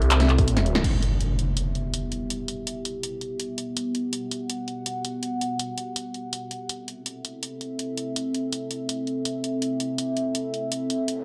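A dark, lush hall reverb surrounds this cinematic, heavy slice of half-time drum and bass at 164 BPM in E minor. A moody analog pad with chorus, phaser and sidechain pumping holds sustained chords throughout, over a drum kit with a cracking snare, hi-hat, handclaps and crash cymbal, while a swirling, saturated detuned saw bass and a tight electronic kick sound only in the opening moments, the kick dropping out before a short break that the bass carries through. A band accent at 0.8 seconds sets off an impact that runs until 2.3 seconds, the harmony shifts from E minor to A minor at 6.7 seconds, and a noise sweep arrives at the very end.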